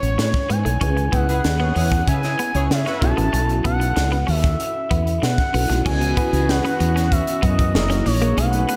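Bittersweet and nocturnal, this short cut from a longer piece is polished 1980s jazz-funk pop at 95 BPM in C# minor, moving at a straight, unhurried pace through chords such as Amaj9, C#m7, B7sus4 and F#13. A smooth, nasal synth lead carries the melody with vibrato, its sound thickened by chorus and analog delay, while a mellow tine electric piano with ensemble chorus sits behind it in the background. Up front, a woody fretless bass with a dark, round, hollow-body tone and analog chorus anchors the low end alongside a crisp fusion drum kit, gritty and saturated, with a punchy kick, a high-tuned snare, hi-hat and crash in a small, pumping room. A bright, compressed clean electric guitar adds a picked riff from 0.2 seconds, and a tight, jazz-style horn section enters at 1.1 seconds with a second line touched by analog delay. At 5.8 seconds a distant, roomy brass ensemble arrives with sustained chords, and the whole mix is bathed in a lush hall reverb that gives it a dreamy glow.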